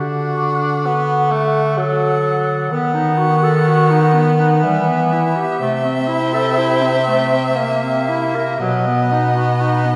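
This is a classical excerpt for single-reed quartet, cut from a longer piece, in a lyrical, yearning and elegiac mood, moving in three with a rubato feel. A clear soprano saxophone carries the melody with light vibrato, staying in a narrow high span from D#5 to F#5 across the full 10.0 seconds. Beneath it, a clarinet with a soft attack shapes a second line, while a tenor saxophone with vibrato supplies accompaniment, and a warm bass clarinet anchors the bass between B2 and E3. The clarinet, tenor saxophone and bass clarinet sound distant and roomy, yet the tenor and bass clarinet also sit up front. The harmony moves from D through B/D#, Em, Am/C and C7 before settling on B at 8.6 seconds, all wrapped in a wet scoring-stage reverb.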